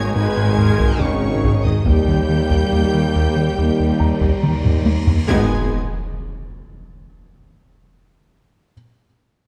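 A dark, warm production set in a moderate scoring-stage reverb opens this brooding, vast cue, a hybrid orchestral and electronic film score at 70 BPM in G# harmonic minor, cut from a longer piece. A clear, intense violin section carries the melody high above, distant and lush, while a second violin section with a smooth top, close violas, and distant cellos fill in behind, all bowed with vibrato. Beneath them, a very quiet, shadowy French horn section and a roomy trombone section hold sustained chords over a low foundation of double basses and a solo tuba, as the harmony moves from G# minor to D# and back. A rubbery, hollow square-wave bass plays a bouncy riff with a resonant filter pluck, and a felt-muted upright piano adds a soft, mellow texture through digital delay. Heavy-sticked taiko drums enter at 0.6 s, close and dry, and a huge cymbal swell rises from 4.2 s under a drum fill before a dark impact lands at 5.3 s and rings out to the end.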